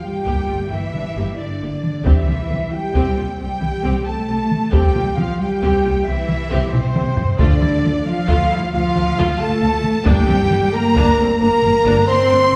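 Taiko drums, struck with hard sticks and heard close and dry, drive this dark, heroic cinematic excerpt in 12/8 at 90 BPM in G dorian, with a drum fill at 6.7 seconds. Distant, roomy French horns sustain chords over focused cello and a smooth double bass section. In the background, woody violins carry the melody while airy flutes, warm lush violins and expressive violas support it, all set back in a reverberant scoring stage, and faint medium-mallet timpani touch in near 10.1 seconds.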